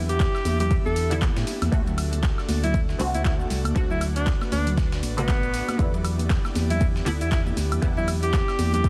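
An edgy alto saxophone with forceful vibrato leads this late-night, hypnotic deep house excerpt over a deep, up-front electronic kick, a hollow organ-like FM bass, muted nasal dub chord stabs soaked in phaser and tape echo, an airy breathy pad, an overdriven analog drum machine with claps and cabasa, gritty background breakbeat hats and snare, and bright high-tuned congas, all moving from Em7 to D7 and back under vinyl crackle and a dense, heavily limited master.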